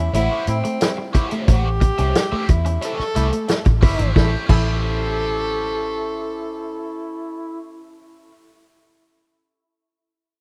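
A straight 4/4 funk groove at 90 BPM drives this funky, energetic fragment of a longer piece over an A7#9 chord. A tight soul drum kit of crash, hi-hat, kick and snare sits up front beside a dark, round, foam-muted fingered bass, while a twangy, compressed clean guitar riff in the background stops at 4.6 s and the drums drop out at 4.7 s. A clear, breathy tenor saxophone carries the jazz-style melody with subtone, vibrato and scooped notes, joined by a mellow, whispered trombone second line that sounds distant and roomy, as a bright, overdriven picked guitar with wah adds accompaniment in a rough home-demo mix with light reverb.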